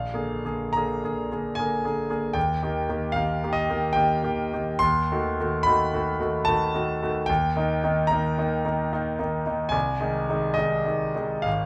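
In a rubato 3/4 at about 73 BPM with uneven beats, this serene, nostalgic passage from a romantic classical nocturne in E-flat major features a solo concert grand piano, intimate and up front with deep bass, long sustain and audible action noise under light reverb, moving through Bb7, Eb, Ebdim7, Eb and Ab/C across its 11.7 seconds.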